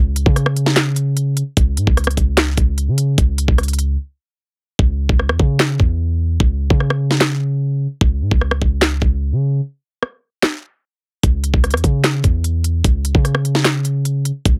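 A deep, boomy 808-style bass opens this trap excerpt, its mellow sine tone carrying a noise layer with a fast attack and decaying tail, up front in a melancholic, menacing half-time groove. An electronic trap kit joins at 0.2 seconds with a knocking kick, sharp snare, crisp hi-hats, handclaps and rim clicks, tape-tinged and forward in the mix; the track pauses for two short breaks, and the hi-hats drop out from 4.8 to 11.2 seconds. The sound is dry and heavily compressed, like a radio broadcast.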